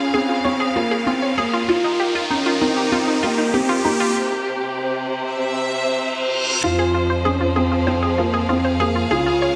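A straight 4/4 pulse at 97 BPM carries this melancholic, moving piano and strings electronica in F minor, cut from a longer piece. A clear, close string section holds bowed chords in shimmer reverb, while a detuned analog pluck spins bright arpeggios through chorus and delay and a felt-muted upright piano repeats a dark, intimate riff with audible action noise. An electronic riser and reverse cymbal build toward the drop at 6.6 seconds, where a biting chamber double bass section enters underneath, all within a lush hall reverb.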